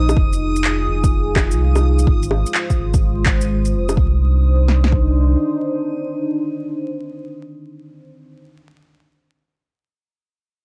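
A swung 4/4 groove drives this nocturnal, melancholic future garage fragment, cut from a longer piece. A deep house kit with a deep kick and punchy snare sits alongside layered electronic bongos, shaker and handclaps, both drum parts roughened by overdrive, and the hand percussion drops out at 4.0 seconds. Underneath, a round sine sub bass sits up front and pumps with the sidechain, while a moody, detuned sawtooth pad holds sustained chords thickened by chorus, moving from Fm7 to Cmadd9. A reversed, granular texture swells high above in its own reverb, glinting brightly through the opening seconds. Vinyl crackle and a dark, warm production give the piece a dusky late-night sheen.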